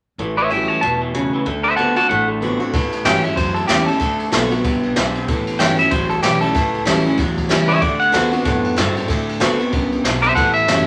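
A moderate large-studio reverb surrounds this upbeat, retro rockabilly cut with a swung eighth-note feel, where a clean, twangy lead electric guitar carries the melody up front over a bright, full-bodied picked dreadnought acoustic, a slightly broken-up, lo-fi riff from an electric guitar through a small old amp, and a woody, thumpy pizzicato upright bass, before a brushed jazz kit with dark cymbals and a boomy kick joins at 2.7 s.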